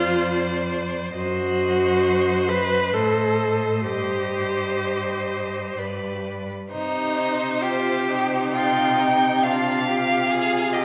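Heard through the lingering, wet reverb of a recital hall, this melancholic, yearning fragment of a slow romantic string quartet movement in 3/4 sways with rubato as a rich, vibrato-laden first violin sings the melody with soft attacks and expressive portamento, a second violin draws a smooth, even line up front, a closely heard viola colours the accompaniment with gliding portamento, and the bowed cello bass slides beneath.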